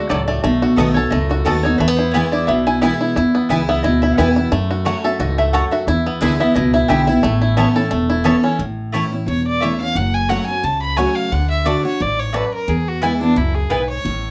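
A metallic, nasal lap resonator guitar played with a steel bar and fingerpicks takes the lead at the start of this virtuosic, rustic bluegrass excerpt at 176 BPM in 4/4 with a light swing. Twangy, percussive banjo arpeggios sit up front until 8.6 s, alongside a bright, full-bodied jumbo steel-string acoustic guitar, double-string mandolin stabs and a dark, thumpy pizzicato upright bass with a woody gut-string sound. From 9.3 s a reedy, close bowed fiddle carries the melody over F#m, D and E, all set in light reverb.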